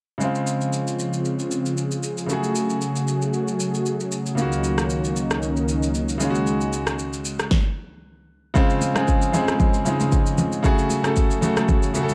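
Relaxed and soulful, this amapiano clip sets a bright, brilliant grand piano up front over a smooth, detuned sawtooth pad whose soft-attack chords carry chorus and sidechain pumping, moving from Dbmaj7 through Gbmadd9/Db, Ebm7/Db and Ab9sus4/Db. An electronic, layered deep house kit sits forward with a deep kick, fat snare, rim click and shaker, tape-warm and re-recorded in a small room, all lightly swung on the 16ths. At 8.8 seconds, high-tuned, thin-skinned congas with hard hands join in the background, their vintage, band-limited tone adding a distant glint as the progression returns to Dbmaj7.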